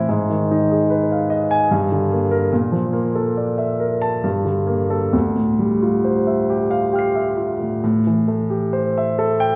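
Classical impressionist solo piano in a dreamy, serene mood, moving at a flexible 65-75 BPM in 3/4 with rubato phrasing and tuned to A4 = 442 Hz. A single grand piano, polished and up front with long sustain, spans D2 to C7 through drifting chords such as Abm6, Bbmaj7#11, Dm11 and Am7 across this 9.6-second fragment of a longer work. It sits in a wet recital hall reverb heard from further back in the room, with nothing above 10.9 kHz.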